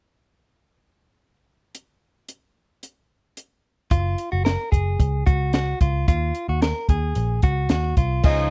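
A compact cocktail drum kit with a punchy kick, high-tuned snare, hi-hat and crash opens this breezy, bright jangly indie pop clip at 111 BPM at 1.7 seconds. At 3.9 seconds a foam-muted, round picked electric bass and a clean, compressed direct electric guitar join, the guitar playing arpeggios through slapback echo over Gbmaj7 and then Ebmadd9. Around 8.2 seconds a boxy, shimmering fingerpicked twelve-string acoustic with analog chorus and a full-bodied octave-layered synth lead with chorus, phaser and vibrato enter, all in a dry, close, 1970s-style small-room sound.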